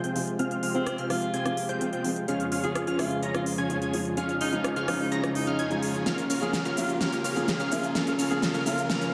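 Powerful and anthemic, this festival progressive house build-up runs at 127 BPM in straight 4/4, moving from F minor through Db over F to Bb minor at 6.1 seconds. A dense, compressed supersaw carries the riff with huge, detuned sawtooth weight and a sub octave beneath it, while a plucky unison lead spins catchy arpeggios high above, and both pass through a filter sweep across the whole passage. A lush pad holds sustained chords with an airy, chorused shimmer in the background, and a felt-muted upright piano adds soft, intimate accompaniment. A distant, roomy alto saxophone plays a jazz-style solo melody with vibrato from 0.7 seconds, and a very quiet electronic riser enters at 2.0 seconds. The big-room drum kit brings a huge snare, crisp hats, cabasa and rim click, closing with a fill from 6.1 seconds, and tape echo on the lead, supersaw, piano and sax joins a plate reverb that soaks the mix in a dreamy haze.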